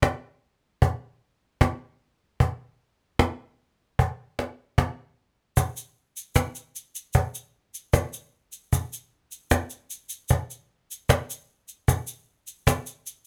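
A straight 76 BPM pulse in 4/4 comes from a woody, up-front cajon with faint snares and soft hands in a small room, joined at 5.6 seconds by a grainy, bright tube shaker with a compressed, saturated edge, giving this short, heartfelt, easy-going pop excerpt a close, detailed sound under light reverb.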